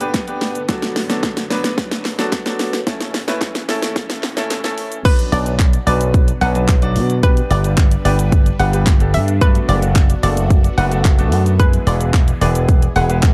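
A punchy, up-front electronic drum kit with a fat snare drives this confident, bittersweet dance-pop excerpt in B minor at 110 BPM, where a clear grand piano and a mellow, phased string-machine cello pad pump beneath a build-up and drum fill before the drop at 5.0 seconds brings in a bright slap bass with an envelope filter and a hollow, nasal square-wave pluck melody with chorus and tape echo, while a very quiet, crisp group handclap sits in the dark, dry mix.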